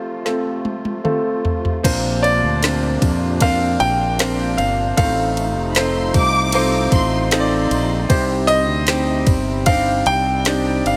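Hopeful and heartfelt, this pop ballad moves in a straight 4/4 with a tender, open-hearted glow. A clear, polished baby grand piano carries the melody, touched with delay, while a warm grand piano sits up front with the accompaniment and a reedy musette accordion shimmers with vintage, band-limited character in the background. An electronic, produced drum kit opens with a fill over a brief break, its soft kick and woody snare tape-toned and close, with crash, ride and toms filling out the kit. At 1.8 seconds a fretless electric bass enters with a direct tone, alongside a very quiet, clean, compressed electric guitar picking arpeggios. A studio violin section adds an expressive, bowed second line with vibrato from 5.7 to 8.3 seconds, and light reverb lends the mix a small-room ambience.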